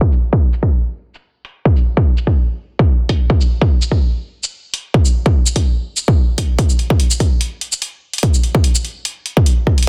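A half-time 4/4 groove with a light swing on the sixteenths drives this short cut from a longer dubstep track, and the mood is heavy and chaotic. A punchy, layered electronic kick drum sits up front and carries the weight, its sound re-recorded in a large room. Beneath it, a quieter layer of electronic shaker and hi-hat fills in the upper detail, thinned by high-pass filtering on the hats, percussion and room sound. A filter sweep runs through the opening section until 6.6 seconds, when a second section brings a build-up that lasts to 9.9 seconds. The mix carries little reverb and ends up dense and heavily limited, with a low-pass filter shading the overall master.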